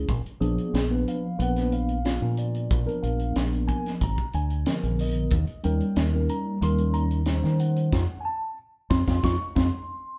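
A straight 4/4 groove at 92 BPM drives this slick, bright electric jazz fusion excerpt, with a tight funk drum kit of high-tuned snare, tight kick and hi-hat up front, a round, punchy, dark fingered electric bass, and a mellow tine electric piano colored by phaser moving through Bb7b9, Eb7 and F5 in a live, lightly reverberant room, before the band hits an accent at 7.9 seconds and the drums play a fill from 9.2 seconds.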